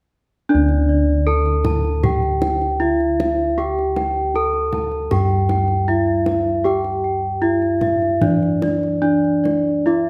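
Dark, reverberant recital-hall sound frames this ceremonial, shimmering fragment of Javanese gamelan at 78 BPM in 4/4, where an up-front, band-limited, vintage-toned bronze metallophone carries the melody over a second ringing, wooden-mallet metallophone playing higher arpeggios, round, beating bossed gongs holding the bass, and a deep kendang drum entering at 0.7 seconds.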